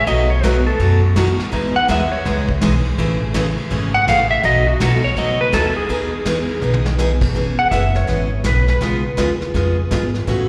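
A clean, dark lap steel guitar with slapback echo carries the slide solo through the first 7.3 seconds of this playful, cheerful western swing excerpt, backed by a bright picked dreadnought acoustic guitar, also with slapback, a woody, thumpy upright bass, and a smooth vintage brush drum kit whose short fill at 6.6 seconds leads into a new section, all captured live through a venue's PA with recital hall reverb.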